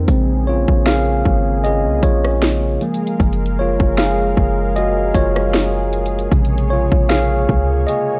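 Contemporary R&B at 77 BPM in Bb minor, longing and moody, this dry, gritty excerpt features a clean tine electric piano taking a solo from 0.1 seconds over Bbm9 and Gbmaj9 chords, backed by a smooth, warbling analog pad with subtle chorus, a deep, boomy 808-style bass, and an overdriven trap kit with a hard-clipped kick, sharp snare, rim click and bright hi-hats, with the piano, bass and kit pressed up front.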